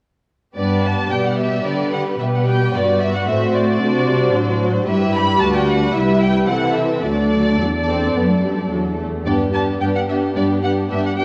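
A quick, spirited classical-period movement for string orchestra in G major at 110 BPM, this graceful excerpt cut from a longer piece has a first violin section carrying the melody with a rich, distant vibrato, over a lightly vibrato second violin line, a lush viola accompaniment and a focused, up-front cello bass. The harmony moves from G through D7/G, C and D before settling back on G by 9.3 seconds, with all four sections playing together from 0.6 to 11.2 seconds. A moderate scoring-stage reverb surrounds the strings, and the sound carries the worn, warbling pitch drift of old cassette tape.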